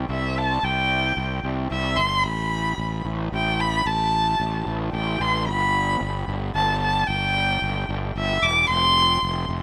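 A single bowed violin carries the melody high in its range, expressive and distant yet up front, with vibrato, portamento and a digital delay trailing its lines. Beneath it, a growly fuzz bass, fingered and overdriven, holds down the low end across a brooding, cinematic post-rock build-up in A minor at 112 BPM in 3/4, tuned to A4 = 438 Hz. The chords move from C5 through Asus2 and G to F5 in a moderate booth ambience, and the passage is cut from a longer piece.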